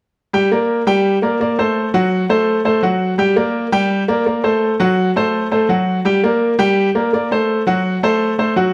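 Latin piano in G harmonic minor at a brisk 168 BPM in straight 4/4, passionate and danceable. A solo baby grand carries it from 0.3 to 8.7 seconds, alternating between G minor and F# diminished chords across a range from F#3 to G5. The piano sounds clear, intimate and up front, with audible action noise and long sustain, set in a moderate large-studio reverb in this short cut from a longer piece.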